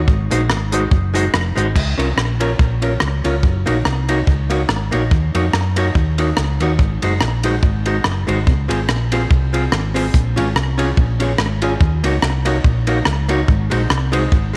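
Ska at 143 BPM in Db major with a light swing, this cheerful, joyful excerpt pairs a round, hollow-body fingered electric bass with a dry compact cocktail kit of punchy kick, dark cymbals, hi-hat and rim click, the kit touched by slapback echo, while a clean, picked archtop guitar comping from 0.3 seconds also carries slapback echo over chords moving from Ab7 through Gb6 and Dbmaj7 in a light reverb.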